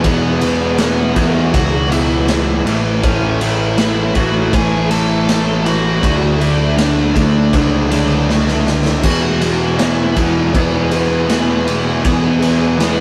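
A restless, anthemic quiet-loud alternative rock passage in E mixolydian opens at 80 BPM with a gritty, punchy garage drum kit and a fuzzed, overdriven picked bass up front, while a bright, compressed fuzz guitar and a dark, sludgy overdriven guitar churn out riffs behind them. A distorted lead guitar carries the melody in the background, and a very quiet bowed string section holds sustained chords with focused vibrato as the harmony moves from E to A to D and back to E. A drum fill at 8.3 seconds leads into that final E chord, all captured as a rough rehearsal-room recording with light reverb.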